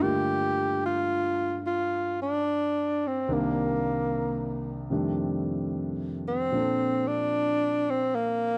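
A breathy tenor saxophone and a concert grand piano begin together in this romantic, intimate fragment of a slow swing jazz piece in Bb major at 74 BPM, the saxophone carrying a mellow, subtone melody with vibrato, scooped notes and a slapback echo. The warm piano accompanies from deep bass up into its middle register with long, open sustain, moving through Gm9, Cm9 and F13 before settling on Bbmaj9 at 6.5 seconds. Both instruments sit up front in a dry, close 1970s-style studio sound with light reverb.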